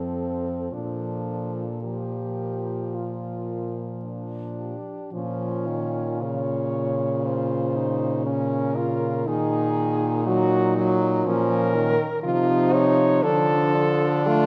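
This classical, lyrical piece for horn quartet unfolds slowly and tenderly at 53-61 BPM in 4/4, with a flexible rubato feel, and is cut from a longer work. All four French horns play throughout the 14.5 seconds. The top horn carries the melody with a mellow tone and light vibrato, while a clear-toned second horn, also with light vibrato, sings an inner line beneath it. Lower down, a present-sounding horn fills out the accompaniment, and the bass horn sits up front with a punchy attack and light vibrato. The music opens in Bb major, then darkens into Bb minor at 5.1 seconds, moving through Ebm/Bb before settling on a D minor chord near the end. A moderate concert hall reverb gives the ensemble a gently blooming, spacious glow.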